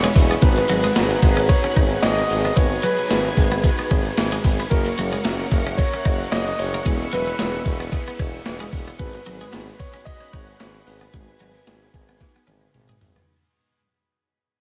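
A gated, overdriven 1980s digital drum machine sits up front in this moody, dramatic slice of 80s-style pop, its thumpy kick, snare drenched in gated reverb, hi-hat, tambourine and toms entering at 0.2 seconds, with a drum fill from 12.2 seconds. The groove moves at 112 BPM in 4/4 with a light 16th-note swing, in G# minor, over chords that run from G#m7 through F# and C#m7/E before returning to G#m7. A clear concert grand piano carries the melody from 0.4 seconds, intimate and polished with audible action noise, long sustain, subtle chorus, ambient delay and shimmer reverb. Beneath it, a punchy, distant tuba with vibrato plays the bass line, while a twangy, bright twelve-string electric guitar picks a chorused riff. A heavy, double-tracked high-gain guitar, a lush, detuned FM electric piano with a soft pad layer, and a vintage, warbling organ-string ensemble holding sustained chords fill the background. 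The whole dreamy, reverb-soaked mix sits in a lush hall and fades out across the clip, which is cut from a longer piece.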